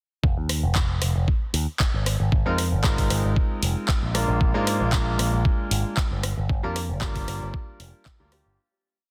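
Sleek and cosmic, this short nu-disco piece rides a straight 115 BPM groove in 4/4, tuned to A4 = 435 Hz. A gritty, thumpy electronic kick drum sits up front with a compressed, sampler-style punch, laying down a four-on-the-floor pulse from 0.2 seconds, while from 0.5 seconds a layered pop drum kit adds a disco backbeat of handclaps, rim clicks and bright hi-hats, both set in studio reverb. A picked electric bass through an envelope filter plays a funky, syncopated line between F1 and Ab2, direct and amped with a bright, forward edge. At 2.5 seconds a brilliant grand piano joins with syncopated chord stabs in drop-2 voicings, its intimate sound carrying audible action noise and long sustain, shaped by sidechain pumping and tape echo. The chords move through F7 (omitting the third), Ab69, Bb7 and Gm7 beneath a dense, heavily limited modern master with light reverb, and the whole groove fades out from 5.8 seconds to the end.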